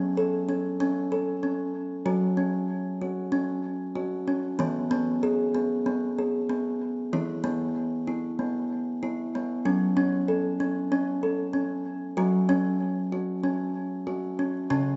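Worn, warbling cassette tape with a muffled top and a wet echo-chamber reverb frames this gentle, meditative world excerpt at 95 BPM in F# minor, where a solo kalimba, woody and hollow-boxed with ringing thumb plucks sitting up front in a diffuse ambient delay, moves from F#m to E at 4.6 seconds and back to F#m at 9.7 seconds.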